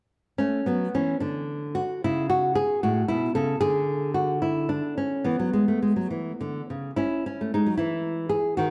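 A fingerpicked nylon-string guitar opens at 0.4 s, playing a baroque-style classical dance in A major, alone and up front. The mood is radiant and serene, moving in 6/8 at roughly 69-77 beats per minute counted in dotted quarters, with a rubato feel that lets the pulse breathe. The guitar stays within a modest span from A2 to A4, and its tone is acoustic and warm. The harmony passes through A, E and C#5 chords, with open stretches where the line carries on unaccompanied by chords. A concert-hall reverb surrounds the instrument, and the dark production gives the short passage, cut from a longer piece and ending at 8.7 s, a hushed, intimate glow.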